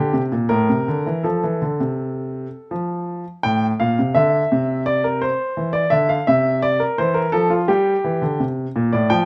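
Cheerful and playful, this short excerpt from a classical-period piano sonatina moves at 84 BPM in a straight 4/4, with a solo baby grand carrying everything from A2 up to G5 across its 9.3 seconds. The piano sits up front with a clear, intimate tone, long sustain and audible action noise, opening on Bbadd9 and F/A before a rootless Amadd11 arrives at 3.4 seconds as the opening phrase returns. Light reverb and a dark, warm production give the sound a gentle glow.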